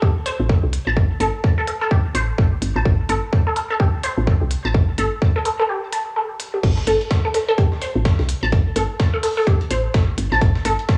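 Lightly reverberant and cassette-tinged with a home-recorded studio ambience, this clinical, sparse minimal techno excerpt in A minor at 127 BPM with swung 16ths pairs a tight, up-front electronic kick and a clicky minimal kit's hi-hat and crash with a round, dark, woody FM bass pumping under sidechain. A squelchy, detuned resonant blip pluck riff warbles through phaser, lush chorus and tape echo, and after a brief break at 5.7 seconds a gritty breakbeat sampler-style kit of filtered, high-tuned snare and hi-hats enters at 6.6 seconds.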